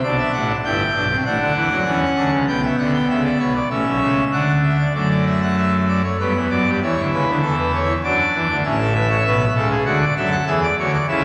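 A wet concert hall reverb with a 2.0-second decay surrounds this short classical passage, cut from a longer piece. It is a baroque-style three-part fugue for solo pipe organ, played on full organ with mixtures, and the instrument sits up front with a majestic, brilliant sound and a romantic voicing. The mood is joyful and stately, moving at 98 BPM in 3/4 with a straight feel. The organ spans G1 to G5 for the whole 11.2 seconds, and a new section begins at 5.0 seconds, settled in D major. The harmony moves through D, G and A chords with inversions over the bass, and the passage breaks off on an E7 chord at 10.5 seconds.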